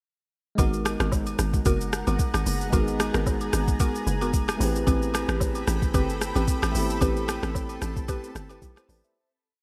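Amapiano with a hypnotic, soulful feel, built on a hollow, bouncy log drum bass in syncopated bursts and a smooth R&B drum kit with a steady shaker, soft kick and syncopated rim, while a clean tine electric piano holds rootless chords with grace notes and short fills, a cloudy granular pad adds blurred sustained chords, a woody mallet-like pluck with chorus, phaser and delay places short syncopated stabs in the background, and agogo bells and woodblock keep a dry timeline, all in a bright 1980s-style digital production that fades out from 7.0 s.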